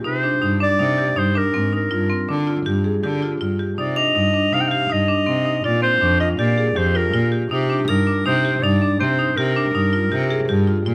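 A soft-attacked, classical-style clarinet carries the melody up front in this urgent, restless snippet of contemporary chamber music in 5/4, over a rich, smooth bowed cello bass with vibrato and bright, percussive hard-mallet marimba arpeggios, while shimmering, bell-like crotales ring in the background from 4.0 to 9.3 s, the ensemble heard in a moderate studio reverb.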